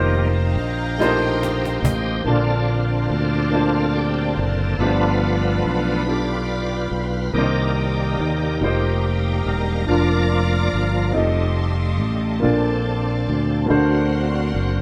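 A slow 6/8 gospel sway at 47 BPM in dotted quarters, in Bb major, opens with a snappy, hard-handed cajon that plays only from 0.1 to 2.0 s, beneath a growly, up-front fingered electric bass. A bright, shouting tonewheel organ carries the lead throughout, colored by a slow rotary speaker and chorus vibrato, over a woody upright piano accompaniment and lush bowed strings holding sustained chords low in the mix. The mood is reverent yet jubilant, with a moderate stone-room reverb lending the live band a shared sense of space.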